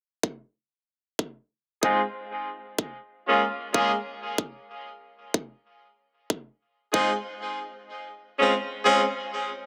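A punchy, layered electronic kick drum opens this gritty, playful glitch hop fragment at 0.2 seconds, sitting up front with the close character of a small room and a high-pass filter trimming both the drum and its room sound. At 1.8 seconds a brilliant horn section enters with ensemble stabs doubled at the octave, its vibrato and smooth top carrying a pop-style polish beneath vintage 12-bit sampler grit. The horns pump against a sidechain, pass through a low-pass filter and a filter sweep, and feed a digital delay. A swung sixteenth-note feel in 4/4 moves the music through Fm7, Bbm7, Cmadd11 and Dbmaj7, and the kick drops out at 7.1 seconds while the horns carry on. A moderate plate reverb frames both parts, and the dense, heavily limited master keeps the sound thick and modern.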